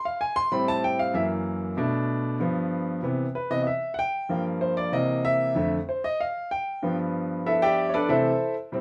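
A clear, intimate baby grand piano opens alone on a rootless Bb7 and carries this sophisticated, danceable solo jazz excerpt at 190 BPM in a straight 4/4. It moves through Am7, F#7, Bm7 and G7 into C major at 3.0 s and runs changes from Cmaj7 through C7#9 and G13 to a closing C6, its long sustain and audible action noise sitting up front in a wet studio reverb that suggests a band playing live in one room.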